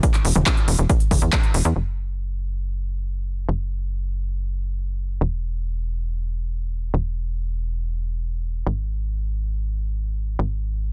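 Emotional and bittersweet, this uplifting trance fragment opens with a punchy, tape-warm electronic kick up front and a crisp, layered big-room dance kit of handclaps, hi-hat and toms, both gone by 1.7 s, leaving the up-front, nasal sawtooth-and-square sequencer bass, with its evolving filter pluck and sidechain pumping, to drive alone until 10.9 s through a dry, dense, heavily limited master.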